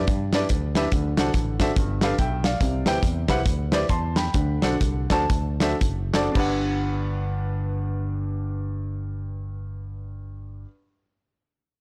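A woody upright piano accompanies this reverent, uplifting uptempo gospel excerpt in G major, swinging in 4/4 at 107-143 BPM alongside a growly fingered electric bass with transformer saturation and a punchy acoustic drum kit with dark cymbals. The tempo slows from 2.6 seconds, and the drums drop out at 6.5 seconds, leaving piano and bass to settle onto a Gmaj7 in a small, lightly reverberant room on a blown-out, overdriven recording.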